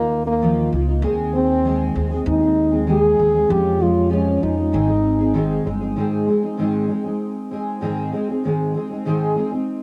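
A straight 4/4 pulse at 97 BPM carries this sunny, easy-going acoustic pop fragment in Ab major, cut from a longer piece. A mellow French horn sits up front with a classical-style solo melody, colored by cassette tape grain and an analog delay, and it stops at 5.7 seconds. Underneath, a full-bodied, double-tracked jumbo steel-string acoustic guitar is fingerpicked from the very start, also with a cassette tape tint. The woody, dark upright bass is plucked pizzicato and drops out at 5.9 seconds, leaving the guitar alone through the later section until 9.8 seconds. The harmony moves from Ebsus2 through Ab/Eb and Db/F before settling on Ab. A home cassette recording with light reverb and studio ambience gives the whole piece an intimate, lived-in feel.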